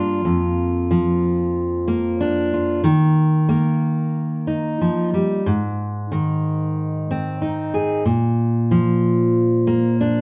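Folk fingerstyle piece at 93 BPM in straight 4/4, reflective and intimate, with a solo fingerpicked steel-string jumbo acoustic guitar sitting up front with a full-bodied tone and fresh strings, moving through Bb/F, Eb, Ab and Bb5 in moderate studio reverb across this 10.2-second excerpt cut from a longer piece.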